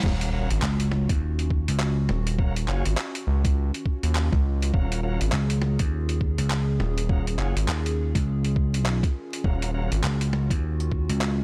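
Funky and swaggering, this glitch hop excerpt struts at 102 BPM in Eb minor with a 16th-note swing, opening on an Ebm9 drop where an electronic kick with a thumpy, pitched-down punch and a compressed boom bap sampler kit of crash, handclaps, hi-hat and high-tuned snare drive things alongside a faint reverse cymbal and sub drop that ends by 2.4 seconds. A gritty, saturated synth bass with oscillator sync sits up front beside a bright, growly slap bass that enters at 0.6 seconds, while a tonewheel organ fires clean stabs with key click, fast rotary speaker, 12-bit sampler crunch and analog delay. Underneath, a warbling, nostalgic tape-like pad holds dark, detuned chords with chorus, phaser and sidechain pumping, all set in a dry digital ambience with vinyl crackle and a high-pass filter.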